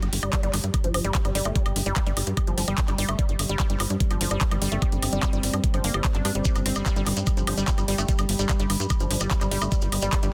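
A straight 4/4 psychedelic trance pulse at 147 BPM in G minor is driven by an up-front, knocking electronic kick and a tight, punchy sawtooth sequencer bass, with a layered garage drum kit adding handclaps, woodblock and metallic hi-hats around a G5 chord. A woody, wave-folded pluck riff with chorus and tape echo pumps with sidechain compression over a resonant drone of moving overtones, which carries chorus, its own reverb and sidechain pumping. From 6.4 seconds a grainy, mellow shekere sits close and dry in the background, and a very quiet, saturated FM wobble bass surfaces briefly at 6.7 seconds, all within a dense, heavily limited, hypnotic excerpt cut from a longer piece.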